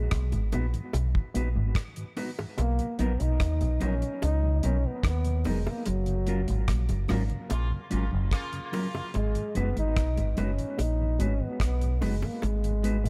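A deep, round fingered electric bass sits up front in this hypnotic, laid-back roots reggae excerpt, its amped tone carrying the low end throughout. Over it, a dark solo trombone plays the melody with vibrato, scooped notes and a smooth top, trailed by dub echo. A damped 70s drum kit with a tight kick, rim click and hi-hat sounds dry and polished with a rolled-off top, joined by high-tuned bongos played close with hard hands. A very quiet, twangy guitar through an envelope filter plays a compressed picked riff. Another mellow guitar, clean and fingered, adds accompaniment soaked in spring reverb and dub echo, while a soft, flute-like tonewheel organ with slow rotary speaker sits very quietly underneath. The chords move from G#m7 to Bmaj7 and F#maj7 before returning to G#m7. The band hits an accent from 5.9 to 9.1 seconds, where a distant, roomy horn section adds a punchy second line from 7.5 seconds.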